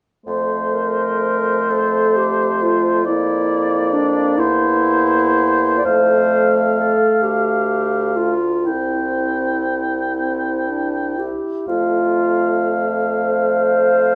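Classical slow romantic movement for wind quintet in F major and 6/8, moving with a rubato feel at roughly 37-46 BPM counted in dotted quarters, with a warm, lyrical mood in this short cut from a longer piece. A mellow oboe with vibrato and a soft attack carries the second line up front, though it sits distant and roomy, while a clarinet, also mellow and the loudest voice, enters at 0.7 s as accompaniment alongside a warm French horn whose light vibrato and soft attack keep it gentle. A bassoon with light vibrato anchors the bass, and the ensemble settles into a moderate recital hall reverb as the harmony passes from F through Dm and C before returning home to F at 11.7 s.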